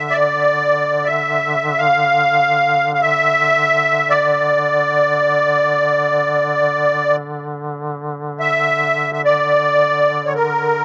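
Caucasian folk lament, mournful and solemn, drawn from a longer piece. A reedy, shimmering musette accordion carries the melody up front, while a duduk sits low beneath it, holding a vintage-toned drone that is warm and marked by vibrato and scooped notes. The sound is dry and open-air, captured outdoors.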